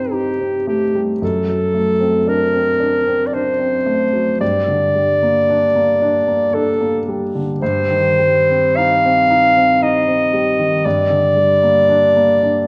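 Yearning and elegiac, this romantic classical excerpt for clarinet and grand piano unfolds slowly in G minor at 56 BPM in 3/4, its uneven beats stretched by rubato. A clear, punchy clarinet sings the melody up front between G4 and F5, while the intimate grand piano accompanies beneath it, its long sustain and audible action noise close at hand. Both play throughout the 12.7 seconds, over harmony that moves from Am7b5/G through D7/F# onto Gm and Cm/G before returning to Gm, all bathed in the wet reverb of a recital hall.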